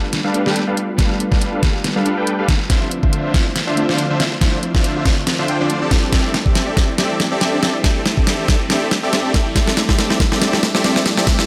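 Lush, playful future bass cut from a longer piece, set in a light digital ambience at 140 BPM with a swung, half-time feel in C major, where huge detuned supersaw chords sit up front with sidechain pumping, a low-pass filter sweep and digital delay over a G7, Dm7, C69, F6 progression. Glassy, chorused digital keys pump in the background, while a very quiet soft, round pluck plays arpeggios and an ethereal pad with slow attack and long release holds sustained chords beneath. The whole stretch is a build-up with a drum fill on an overdriven pop kit of deep snare and hi-hat, a knocking overdriven electronic kick arriving at 1.0 s, and a faint electronic riser entering at 4.6 s.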